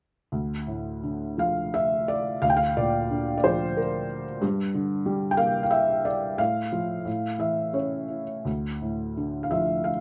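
Bittersweet and moody, this brief excerpt from a longer classical piece features a solo felt-muted upright piano, soft, boxy and intimate with audible action noise, playing lyrically in rubato 3/4 around 84-93 BPM in D minor, moving from Dm through Bb/D, Gm, F/A and A back to Dm at 8.5 seconds, set up front in moderate studio reverb.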